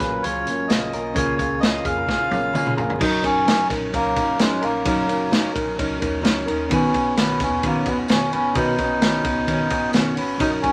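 A breathy, nasal melodica carries the tune up front in this breezy, youthful jangly indie pop excerpt at 130 BPM in F# major, over a full-bodied fingerpicked steel-string acoustic guitar, slightly broken-up arpeggios from an electric guitar through a small old amp, a worn, slightly out-of-tune reed electric piano kept very quiet, a deep sine sub bass with octave in the background, a jingly tambourine and a vintage drum kit with a punchy kick and a rolled-off top that plays a fill from 2.1 to 3.0 seconds, all set in moderate studio reverb with a layer of vinyl crackle.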